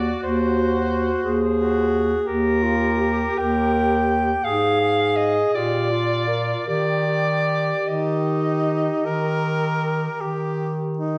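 A soprano saxophone, alto saxophone, tenor saxophone and bass clarinet all sound together from the start, opening a tender, lyrical classical passage for single-reed quartet cut from a longer piece. It moves in a slow, rubato 12/8 at roughly 50-60 BPM in the dotted quarter, in Eb major, drifting from Ab7 over Eb to Eb, then through Fm7 over Ab and Bb before settling back on Eb. The soprano carries the melody up front with a clear tone and light vibrato, yet sounds distant and roomy. The close-miked alto supplies a second line beneath it, while the tenor fills in accompaniment with vibrato and a soft attack. The bass clarinet anchors the low end with a warm, vintage colour, sitting as prominently as the soprano. Everything is bathed in a wet recital-hall reverb within a dark production; the soprano drops out at 10.2 seconds and the alto at 10.8, leaving tenor and bass clarinet to close at 11.2 seconds.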